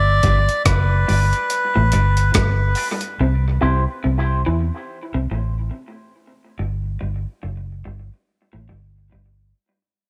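A swung, laid-back dub reggae groove opens this spacious cut from a longer piece, with gritty, overdriven sampler-style drums of hi-hat, thumpy kick and rim click sitting up front beside a round, punchy, foam-muted bass. A reedy, breathy melodica carries a brief tape-echoed melody, while a bright, twangy envelope-filtered guitar and a dark, lo-fi, slightly broken-up guitar riff in the low register fill out the dry, echo-heavy mix over G moving to C. At 3.2 seconds the drums drop out for a break as the music begins to fade. The envelope-filtered guitar lingers briefly, and the bass and the low guitar riff carry on until the chords fall away.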